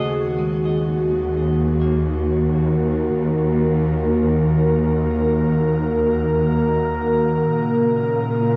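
Awash in a wet plate reverb and an echo-heavy mix, this short ambient fragment, cut from a longer piece, drifts in free time in Eb minor with a reflective, serene mood. Up front, an airy, breathy pad holds soft sustained chords with a slow attack and long release, thickened by chorus and shimmer reverb. Beneath it, a lush symphonic cello section carries the bass line with bowed, expressive vibrato. A clean, twangy electric guitar fades in from the start, picking arpeggios in the background through spring reverb, tape echo and shimmer reverb before it stops at 6.0 seconds. The harmony rests on Ebm and moves to Bbm at 7.5 seconds.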